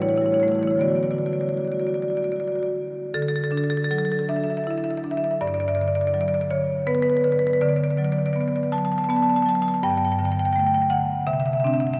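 A woody, up-front marimba struck with medium hard mallets carries this flowing, contemporary classical solo excerpt in D major, moving in a rubato 3/4 at roughly 75-84 BPM through mellow harmonies such as Dadd9, Gmaj7 and Cadd9, with a new section from 3.1 s, its mid-forward tone ringing from G2 up to A5 inside a dark, cavernous cathedral reverb with a 5.4-second tail.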